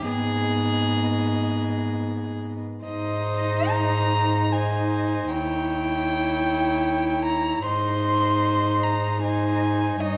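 A wet scoring-stage reverb with a 1.7-second tail surrounds this slow, rubato romantic movement for string quartet in 3/4 and Ab major, an elegiac, yearning fragment cut from a longer piece and moving at 63-78 BPM. Up front, one close, intimate violin carries the melody with light vibrato and an airy sul tasto bow, while a viola of similar soft-attack tone plays the accompaniment beneath it. A rich cello, also up front, holds the bass, and a second violin, pure and floating at a distance, plays the second line as the harmony moves from G#m to Ab at 2.8 seconds, then through Eb7b9 back to Ab at 7.7 seconds.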